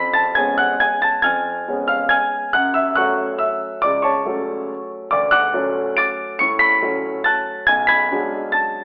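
A polished, up-front grand piano plays alone across this 8.8-second cut from a longer classical waltz in F# minor, its elegant, bittersweet part spanning B1 to D7 in a rubato 3/4 at 139 BPM through C#7/E#, F#m, Dmaj7 and G#m7b5/B, with short-sustained notes set in a moderate recital-hall reverb and filtered to a telephone sound.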